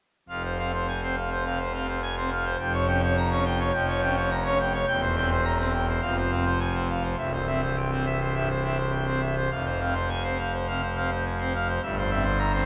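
Classical organ toccata, stormy and dramatic, heard here as a short fragment cut from a longer piece in a straight, steady 4/4. A pipe organ plays alone from 0.3 to 12.7 seconds, registered as full organ with bright mixtures that give it a majestic, brilliant sound. Its romantic voicing spans from deep notes at C1 up to Bb5, and the instrument sits up front in the mix. The harmony moves through minor chords, a half-diminished seventh and dominant sevenths, returning repeatedly to its home chord for a tense, weighty feel. A wet church reverb with a 3.0-second decay surrounds the organ, adding a vast, resonant sense of space.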